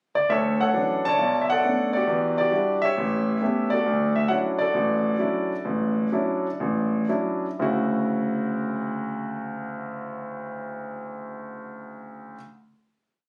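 Relaxed and warm, this short, complete solo jazz piece for concert grand piano swings in 4/4 at 115-136 BPM in D major. It moves through Dmaj9, Bm9, Em9 and A9 with stride bass and close voicings beneath a motif-based melody in balanced phrases, then slows from 3.9 seconds before settling on a final chord held from 7.6 seconds. The up-front piano sounds clear and intimate, with deep bass, long sustain and audible action noise, captured on a phone in a room with club-like reverb.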